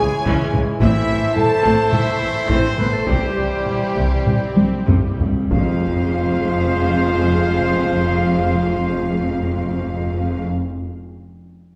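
A dark, dramatic excerpt of epic orchestral film score in F harmonic minor opens with lush bowed violins carrying the melody over a pure-toned flute group, a second violin line, close chamber violas, sustained chords from mellow French horns, a clear trombone section and woodwinds, bright trumpet stabs, and deep cello and double bass sections, while heavy taiko drums pound from 0.3 s to 6.8 s and hard-mallet timpani join at 3.1 s, the tempo slowing through the first 5.5 seconds under drum and timpani fills before the music settles onto F minor in a reverberant concert hall.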